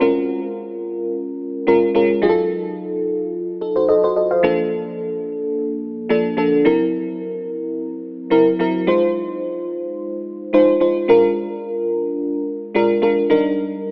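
Heard through a narrow telephone-like filter and bathed in a moderate, lush hall reverb, this short pop fragment cut from a longer piece has a bittersweet, nocturnal mood. A single FM electric piano carries the whole passage alone from 0.0 to 13.9 seconds, its bell-like, sparkling tone sitting up front with a fast attack that decays into a full-bodied, mellow glow. Tremolo and analog chorus give the instrument a gently shimmering character, and a noise layer sits inside its sound. The playing moves in 4/4 with a light swing on the sixteenths, tuned slightly below standard pitch at A4 = 437 Hz. The opening section drifts through Db6, F7b9, Bbmaj7 and Gb7#11, and a second section arriving at 8.9 seconds turns through Fm7 and Bb7 before settling on Ebmaj7.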